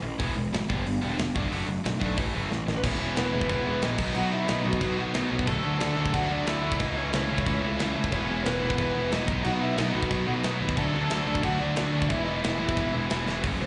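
A biting overdriven guitar, a raw garage guitar set back with slapback echo, and a growly fuzz bass open this energetic, rebellious punk rock excerpt in E major at 181 BPM, with a tight drum kit of bright cymbals and tight kick joining at 0.2 seconds. After a drum fill, a dark, bluesy distorted lead guitar with slapback and tape echo enters at 2.8 seconds, riding over chords moving through E, B, D and A/C#. The sound is that of a live gig heard through a club PA, with small-room reverb and a dulled top end.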